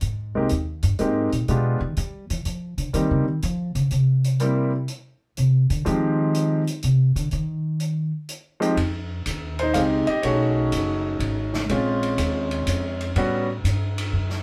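Heard from further back in a wet studio room with a short ambience, this cool, late-night jazz piano trio excerpt swings at 123 BPM in 3/4. The pizzicato upright bass sits up front with a woody, steel-strung tone and carries a solo through the first 8.8 seconds, ranging from F#1 to G3 over changes such as Abmaj9/C, G7 and Cm7. A clear, intimate grand piano, also up front, plays the melody from 0.4 seconds, and its action noise can be heard beneath the notes. An open acoustic drum kit with a natural small-room sound and dark cymbals keeps time softly in the background on hi-hat, ride and a medium-tuned snare. At 8.8 seconds the music settles into F minor, moving through richer harmonies like Fm9, B13 and Bbm9 before the piano stops at 13.5 seconds.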